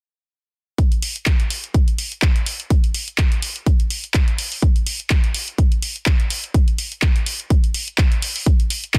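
A house groove with a light sixteenth-note swing runs from 0.8 to 9.0 seconds, built on a punchy, up-front electronic kick drum and a layered house drum kit of handclaps and hi-hat that sits somewhat lower in the mix. The mood is joyful and euphoric, carried entirely by these produced, electronic drums in a digital ambience. This cut from a longer piece has a dense, heavily limited modern master.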